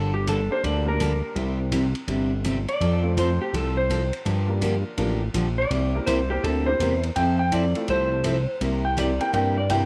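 A dark, clean lap steel guitar slides up front through a cheerful, down-home western swing passage. It is backed by a bright, full-bodied picked acoustic guitar with finger squeak, a thick detuned analog bass, a distant, roomy big-band drum kit with a boomy kick, hi-hat and ride, and a worn, woody upright piano sitting in the background, all in a small room with light reverb.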